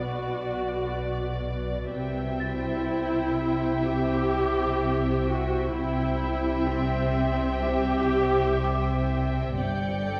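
A cinematic suspense score excerpt at 63 BPM, ominous and tense, built on muted strings played con sordino: a veiled symphonic violin section carries the melody from the background while a chamber violin section sings a second line above a close viola accompaniment, and a studio cello section and lush double bass section hold down the low end. A warbling, lo-fi tape-like pad with chorus sustains chords beneath, and a worn, slightly out-of-tune celesta adds sweet, bell-like glints, all heard from further back in a reverberant concert hall as the harmony moves from Bm to C. At 9.6 s a second chamber violin section enters high above for a brief texture as the piece reaches a G5 chord.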